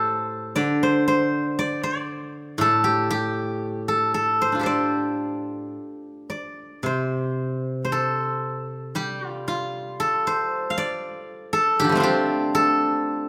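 The recording sits in a moderate, stage-like reverb that lets each note hang briefly in the air, with the zither placed up front. This is a short excerpt of Chinese traditional music for solo plucked strings, carrying a longing, contemplative mood. A single acoustic steel-string zither, played with fingerpicks, plays alone for the whole 13.3 seconds, its silvery tone ringing across a span from low A2 up to F5. The pulse moves freely in rubato, giving the phrases an unhurried, searching quality. Around 6.9 seconds the music turns to a new section, carrying the same reflective ache through to the point where the passage is cut from the longer piece.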